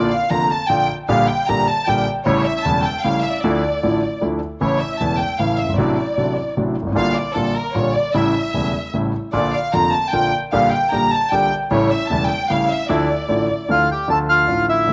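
In a rubato 3/4 at 152 BPM, this tense, passionate tango fragment in D harmonic minor opens with a lush, intense bowed violin section carrying a vibrato-rich second line over a clear, intimate, polished concert grand piano whose deep bass and long sustain come with audible action noise. The strings stop at 13.7 seconds, when a reedy, vintage, band-limited bandoneon steps up front with the melody until the cut at 14.9 seconds. A moderate spring reverb adds studio ambience as the harmony circles through Bb, A7 and Dmadd9 before landing on Dm.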